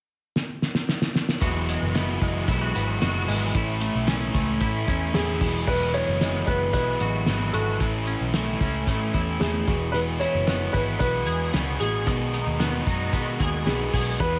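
This jangly indie pop excerpt moves at a straight 113 BPM in 4/4, opening with a cloth-damped drum fill from 0.4 seconds that sounds thuddy and muffled, with dark cymbals, a fat snare, a tight kick and gated reverb giving the kit a gritty, lo-fi character up front. At 1.4 seconds the band enters together in E major, with a crunchy overdriven guitar playing picked accompaniment beside a clean, twangy electric guitar whose compressed arpeggios shimmer through analog chorus. Beneath them, a vintage muted picked bass sits round and punchy, its dark, foam-muted tone anchoring the low end. The harmony cycles between Eadd9 and A before turning to B6 near the close, giving the mood a bright yet nostalgic glow. From 5.1 seconds a woody upright piano carries the melody in a narrow range, its slapback echo and audible action noise lending an intimate, natural feel within a moderate studio reverb.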